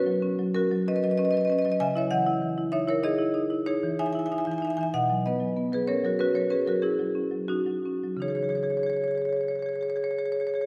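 Hypnotic and reflective, this brief excerpt of contemporary classical music for solo marimba moves in a rubato 5/4 at roughly 81-99 BPM, centred on C# dorian. Played with medium hard mallets on rosewood bars, the marimba sounds woody, dark and smooth as it alternates between Badd9 and C#madd9 harmonies across a range from B2 to G#5. A wet scoring stage reverb with a 1.6 s decay places the instrument further back in the room.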